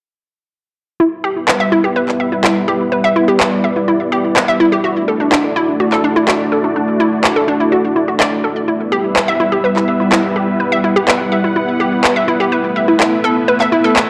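Progressive house in E minor at 125 BPM, bittersweet and emotional, this cut from a longer piece opens at 1.0 seconds with a lush, detuned supersaw pad holding sustained chords under a filter sweep, while a glassy, crystalline wavetable pluck spins arpeggios through chorus and digital delay. Layered, tape-warm electronic handclaps join at 1.5 seconds, sitting up front as the harmony moves from Em to Dadd9, back to Em and onto Asus2. A moderate digital room reverb wraps the dark production.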